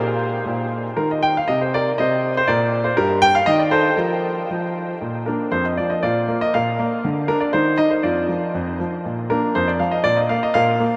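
A clear, polished baby grand piano plays solo and up front in this playful, elegant classical-period sonatina fragment in 2/4, its opening passage colored by minor chords such as Cm9 before it settles onto Bb at 5.0 seconds, with the instrument bathed in a huge, wet reverb that places it in a vast, echoing space.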